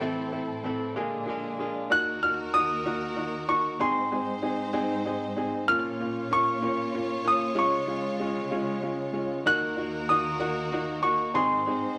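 An aching, dramatic pop ballad in a slow six-eight lilt at 64 BPM, this short cut from a longer piece sets a bright, brilliant concert grand piano carrying the melody up front, its short-sustained notes trailed by a slapback echo. Beneath it, an upright piano with a woody, natural tone supplies accompaniment up front, while a lush studio string section holds sustained, vibrato-rich bowed chords that reach down into a deep low register. A clean electric guitar, recorded direct and compressed, picks arpeggios in the background from the start until 1.9 seconds, then returns at 9.5 seconds through the end. The harmony moves through minor and major shades, settling on Eb minor, Ab, Bb minor and Db, and the whole sits in a moderate echo-chamber reverb with a small-room closeness.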